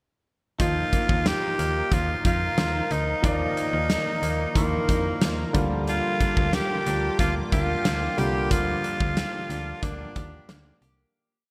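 Nostalgic and glossy, this short, complete 1980s-style pop verse in Eb major moves at 91 BPM in a straight 4/4, led by an up-front, raspy tenor saxophone playing hook phrases with light vibrato, over held drop-2 chords from a clear grand piano, a thick detuned pad colored by chorus and phaser, a very quiet, twangy direct-recorded guitar in a fingerpicked roll, snappy FM bass driving in eighth notes, and a big rock kit with a punchy kick, a big backbeat and gated reverb, all set in a lush hall and bright digital production before fading out from 8.5 to 11.1 seconds.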